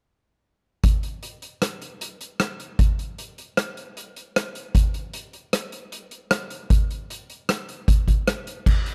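Driving and intricate, this short progressive instrumental fragment, cut from a longer piece, moves at 154 BPM in a straight 5/4. A street-band drum kit carries it alone from 0.8 to 8.9 seconds, with its crash cymbal, hi-hat, kick drum and rim click sitting up front, its dark cymbals and boomy kick giving an acoustic, airy, polished big-room character. The dry, close mix has the feel of a 1970s studio recording.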